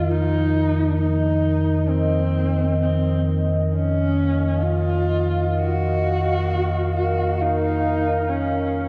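A rumbling, nasal drone sits up front from the very start of this ominous, vast dark ambient excerpt, which moves in free time over an F5 chord with the tuning set to A4 = 441 Hz. Around it, a deep, warbling pad sustains moody, vintage-tinged chords through chorus and its own reverb. A husky horsehead fiddle, bowed and up front, carries an expressive melody with vibrato and portamento, its dub echo trailing into a wet spring reverb that makes the whole 8.9-second fragment feel cavernous.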